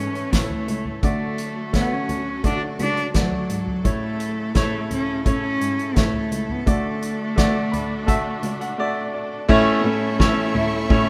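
A clear, polished baby grand piano leads this hopeful, uplifting piano-driven pop excerpt in A major at 85 BPM, with a bowed solo cello singing the melody with vibrato in the background, a second cello holding the bass up front, a lush symphonic string section sustaining chords, and a roomy soft-mallet drum kit with a fat snare and punchy kick, as a piano fill arrives at 7.4 s before an expressive violin section and a very quiet overdriven semi-hollow guitar riff enter at 9.5 s, the whole heard as a rough home-demo mix with light reverb.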